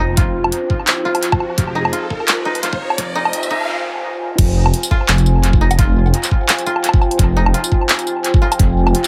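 This short excerpt of half-time drum and bass in F minor at 171 BPM opens with a deep, moody ambient pad holding sustained chords, with chorus and sidechain pumping, while a woody, fingerpicked koto plays arpeggios through a low-pass filter and dub echo. A dark, detuned sawtooth bass rumbles up front on a low F, and a riser and noise sweep build tension from 0.1 s, leading into a brief break at 3.7 s. From 0.2 s, a knocking electronic kick and an overdriven kit of bright hats, handclaps, tambourine, woodblock and crash cymbal, treated with tape echo and swung on the 16ths, drive the track, and the drop lands at 4.4 s. The pad's slow attack and long release keep the space brooding beneath the beat, and the koto's dry, plucked tone sits against its haze. The echo-heavy, high-pass-filtered mix sits in a light digital ambience, giving the dark mood a spacious feel.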